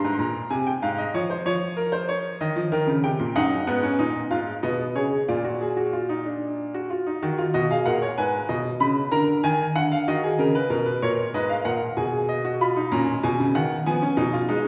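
A resonant recital hall surrounds this recording, its reverb blooming around a bright baby grand piano that sits up front in the sound. The piece is a baroque-style three-part fugue in 6/8 for solo piano, heard as a short fragment cut from a longer work, with a mood that is both contemplative and driving. The piano plays alone throughout, ranging from Gb2 up to C6, with a brilliant, open tone that carries clearly through the hall. The music moves through a returning first section, a contrasting middle passage from 7.2 seconds, and a return of the opening material at 11.0 seconds. Its harmony settles into a minor tonality after a few seconds and passes through chords such as Fdim/Ab, Bb7/D and Abm/Cb, closing on a diminished chord that leaves the passage unresolved.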